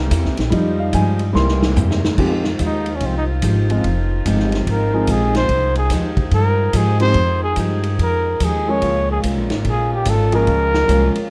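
A swung 4/4 groove drives this brassy, dramatic slice of big band jazz, cut from a longer piece. A baby grand piano leads the opening with a natural, short-sustained voice over C7 and Fm9 chords, and a drum fill from 1.4 to 2.2 seconds carries the band into the main passage. The kit brings a punchy kick, a medium-tuned snare, hi-hat, ride, crash and toms in a big, natural-sounding room, while a woody pizzicato upright bass sits up front and a picked dreadnought guitar with fresh strings and a saxophone section holding sustained, lightly vibrato-tinged chords stay in the background. From 2.6 seconds a dark, breathy trumpet takes the solo melody, intimate and whispered, with a soft attack, scooped notes and a smooth top, as the harmony moves to Bbm7 near the close. Light reverb and a dusky, warm production frame the whole ensemble.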